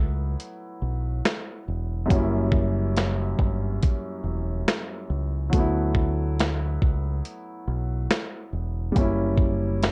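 A gritty, sampler-style soul drum kit of finger snaps, hi-hat, thumpy kick and medium-tuned snare comes in at 0.4 s, sitting up front in this mellow, dreamy lo-fi hip hop fragment with a lazy swung feel. Beneath it, a dark, round fingered electric bass with saturated punch and a woody upright piano with long sustain and a cassette tint trade between D6 and F#7b9 chords. The dry mix has a worn, warbling old-tape quality, with gentle pitch drift.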